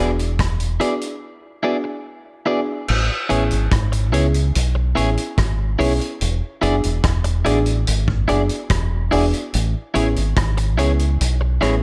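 A lush, dreamy FM electric piano with a soft pad layer and chorus opens this sweet, tender lovers rock reggae excerpt, alongside bright, clean twelve-string electric guitar stabs in spring reverb and a round, deep dub fingered bass sitting up front. A vintage acoustic drum kit joins at 0.2 seconds with a punchy kick, rim clicks, hi-hat and shadowy, rolled-off cymbals, and a break from 1.2 to 2.9 seconds precedes a new section. The harmony moves gently between E7 and Amaj7 within a generous studio reverb.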